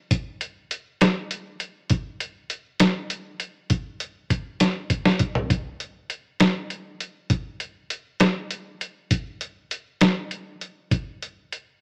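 A muffled, pitched-down drum kit with a sampler character sits up front in a light reverb, its thumpy kick and medium-tuned snare joined by hi-hat and toms. This brief rock fragment in a slow 6/8 has a hazy, hypnotic mood, and the compressed kit carries it alone from start to finish. A drum fill at 4.6 seconds leads out of the opening passage into the second section at 5.5 seconds.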